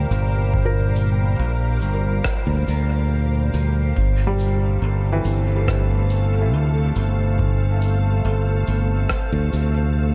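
This meditative, hazy ambient dub excerpt rests on a soft, organ-like pad holding sustained chords through ensemble chorus and reverb, its pure, slightly detuned tone shading from Gm7 into F/G at 4.0 seconds. Beneath it, a growly, bright fingered electric bass sits up front with tube saturation, while a felt-muted upright piano plays mellow, intimate arpeggios, its audible action noise and short sustain trailing off into tape echo. A glassy texture of drifting overtones hovers in the background on a single high note, softened by chorus and reverb. Cabasa and rim click enter at 0.1 seconds with a roomy acoustic sound thrown into dub echo, and a deep, overdriven analog kick arrives at 0.5 seconds, dropping out at 9.3 seconds. The whole passage rests in a small room ambience and is cut from a longer piece.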